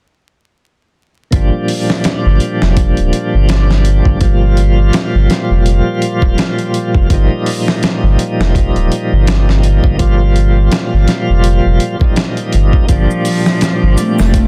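Trip hop at 83 BPM in G minor with a cinematic, smoky mood, this excerpt sets a bright, shouting tonewheel organ with slow rotary speaker, overdrive, tremolo and tape echo over a round, deep sub bass and a gritty, compressed sampler-style drum kit with a thumpy kick, all moving from Gm7 to F9sus4 under vinyl crackle and a dense modern master, until a distant bowed cello with vibrato and portamento, background maracas and triangle, and, from 13.9 s, a breathy, wind-like noise texture join near the end.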